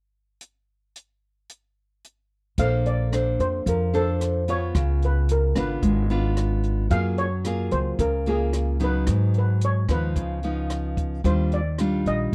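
A dry, close 1970s-style studio sound frames this romantic, sophisticated bossa nova excerpt, where a compact cocktail drum kit of hi-hat, rim click and tight kick plays alone from 0.4 seconds until, at 2.6 seconds, a woody gut-string upright bass sits up front, a full-bodied fingerpicked nylon-string guitar with audible finger squeak shares the foreground, and a mellow double seconds steel pan struck with soft rubber sticks carries a shimmering melody over lush chords such as Bbmaj9, Db7b9 and Gbmaj9.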